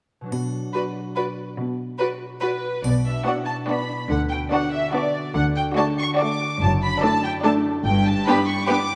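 A bright, ringing concert harp opens this playful, whimsical film cue in 3/4 with fingerpicked arpeggios, joined at once by a soft-attack cello section on the bass and a touch of triangle that falls away by 3.6 s, as sul tasto bowed strings gather: a rich, up-front violin section carries the melody over a pure, floating second violin line and a dark, smooth viola accompaniment, while a warm double bass section deepens the bass from 2.8 s, the whole mischievous, magical cue sitting in a moderate scoring stage reverb.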